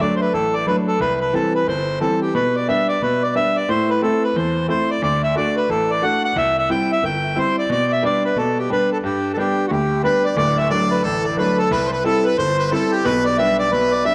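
Swinging at 179 BPM in 4/4, this lively Celtic hornpipe in G major sets a reedy, smooth accordion melody with tape echo up front over brilliant, intimate grand piano accompaniment with audible action noise, while a clear harmonica with light vibrato and a soft attack adds a classical-style second line from 10.0 seconds, all in a wet recital-hall reverb with a dark, warm production, cut from a longer piece.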